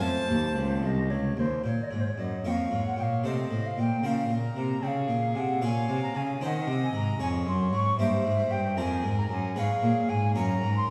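Solemn and grave, this excerpt from a Baroque-style sonata movement in Bb minor moves at 76 BPM in a straight 6/8, with a bowed violin of reedy gut-string tone carrying the melody while an airy wooden flute with vibrato sings the second line from a distance, a brilliant Flemish-style harpsichord plucks its accompaniment up front, and a bowed cello with light vibrato holds the bass, all heard from further back in a recital hall with a reverb of 1.8 seconds.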